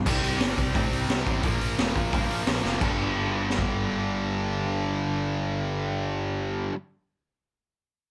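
A dry, close-sounding punk rock excerpt that's rowdy and energetic, built on two bright, tight distorted guitars (one up front, one set back) picking a riff over C5, Bb5 and G5 chords, while a growly, fuzzed-out picked bass drives underneath. The raw garage drum kit is gritty and saturated, with a high-tuned snare, boomy kick, crash and hi-hat in a small room. A drum fill lands at 2.6 seconds before the kit stops at 3.7 seconds, leaving guitars and bass to carry the riff until the cut at 6.8 seconds.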